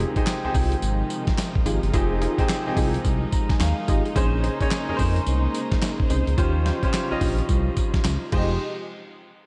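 Confident and slick, this short new jack swing cut in F minor rides a swung 108 BPM groove, with a gritty, tape-warm sampler-style drum kit of thumpy kick, handclaps, tambourine and crash up front beside a smooth, sawtooth-and-square synth bass. A brilliant concert grand piano with slapback echo plays the accompaniment and adds a fill from 3.0 to 4.2 seconds, while a punchy, detuned polysynth with chorus and digital delay stabs in the background over dark, sul tasto studio strings holding soft-edged chords. The changes move from Fm9 through Bbm11 and Eb13 back to Fm9, all bathed in a lush hall reverb that gives a big arena sound.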